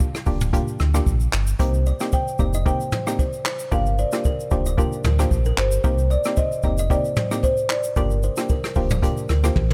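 A deep, sine-toned sub bass with an added octave sits up front from 0.3 seconds, anchoring this smooth, sultry afrobeats excerpt in G minor at 113 BPM with a gentle 16th-note swing. A jazz brush drum kit, acoustic with a punchy kick, drives the groove with handclaps, hi-hat, rim click, shaker and toms, and closes with a fill at 9.6 seconds. A hollow, nasal square-wave pluck with chorus supplies bouncy accompaniment through the Gm7 and Cm7 changes. Above it, a close-miked, dry marimba played with medium mallets carries the melody through a delay. A woody, airy kalimba riff with its own delay joins at 1.6 seconds, and a small room ambience surrounds the whole.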